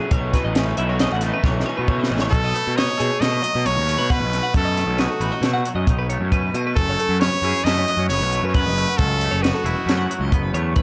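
Soloing up front with vibrato and slapback echo, a brilliant, forceful pop-style trumpet carries the melody from 2.3 seconds in this intricate, bright math rock and midwest emo excerpt in 5/4. Beneath it sit an up-front, fuzz-drenched picked electric bass, compressed twelve-string electric guitar arpeggios with their own slapback echo, and a twangy clean electric guitar in the background. A raw, double-tracked overdriven garage guitar riff stops at 2.3 seconds, and a small-room cocktail drum kit with a dark, smooth tone, a high-tuned snare and a punchy kick plays a fill from 1.4 seconds, all under light reverb.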